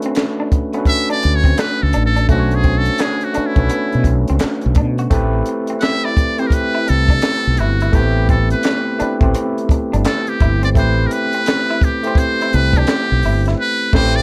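A swung sixteenth-note groove in 4/4 drives this late-night, introspective neo-soul R&B passage, cut from a longer piece. A compact cocktail kit with a punchy kick, high-tuned snare, hi-hat, handclaps and a crash sits under a round, up-front fretless bass with a subtle chorus entering at 1.2 seconds, while a gritty overdriven tine electric piano accompanies and a slightly broken-up, lo-fi electric guitar adds a picked second line in the background. Over the Bm9 to Am9 changes, a buzzy, thin trumpet with a metal mute plays a close-miked jazz solo with vibrato and slapback echo, and the band hits an accent at 13.6 seconds in a dry, intimate sound.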